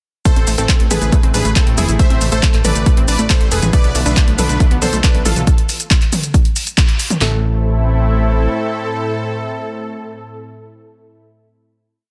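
A short, driving and bittersweet uplifting trance piece opens straight into the drop, where an up-front analog drum machine pounds a four-on-the-floor kick with punchy snare and clap, while a second tape-warm kit adds hats, shaker and toms. A detuned supersaw stab with an airy noise layer plays a repeating riff melody in thirds and sixths over a lush, chorused unison pad, and a wave-folded unison pluck ticks out a 16-step arpeggio in the background through tape echo, all three pumping against the kick. A fat, saturated sawtooth bass rolls in sixteenths just after, and once the drums and pluck stop near 7.3 seconds and the bass at 8.5 seconds, the stab and pad hold a final chord until 11.2 seconds.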